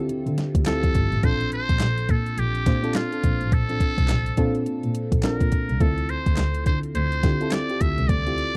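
A metal-muted trumpet carries a buzzy, raspy melody with vibrato over a mellow FM electric piano with chorus from the very start, and a crisp 8-bit drum machine enters at 0.1 seconds with handclaps, hi-hat, a thumpy kick and a medium-tuned snare, the whole kit overdriven and pushed up front. A dark, woody double bass is bowed sul tasto with vibrato and portamento beneath the chords, which move from Dm7 to Bbmaj7 and back to Dm7 at 5.8 seconds. This confident, bouncy new jack swing fragment in D minor rides a swung 16th-note feel at 105 BPM, captured dry and close like a 1970s studio recording.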